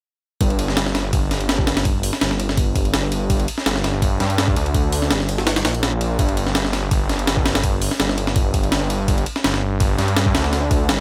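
Frenetic and raw, this drum and bass excerpt with a jungle edge runs on a compressed, gritty breakbeat kit of thumpy kick, high-tuned snare, hi-hat and ride cymbal, set up front in a small room ambience. Beneath it, a thick, menacing detuned saw bass with a beating, sustained tone and fast attack holds the low end up front, both parts playing together from 0.4 to 11.0 seconds. A slight swing on the sixteenths and a tuning a touch below standard give the groove its restless, rough character.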